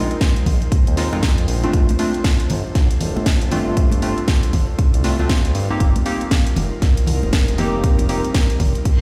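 Heard through a big sound system in a bare stone room with light reverb, this sunny, relaxed deep house excerpt at 118 BPM rides a swung 4/4 groove. A punchy, up-front electronic kick and a house kit of cracking snare and warm hats drive it, with close, dry congas played with hard hands in the background. A smooth, nasal detuned synth bass with vibrato sits underneath, and round, wave-folded analog key stabs run through chorus, a low-pass filter and digital delay. An airy, breathy, mellow pad drifts across Bb9sus4, G9sus4 and F9sus4 chords, the pad, keys and bass all pump to the sidechain, and a brief electronic reverse cymbal appears at 8.9 s.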